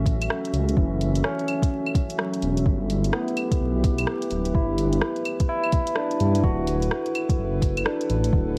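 Wistful and rainy, this short future garage fragment swings on a soft, up-front electronic kick and a tape-warm garage kit of claves, hi-hat and rim click set in studio reverb, while a rumbling detuned saw bass pumps underneath, a moody analog pad with chorus sustains chords through F#m7, G6 and D6, and a barky tine electric piano played through a combo amp adds clean accompaniment with tape echo, all beneath a veil of vinyl crackle and lossy compression artefacts.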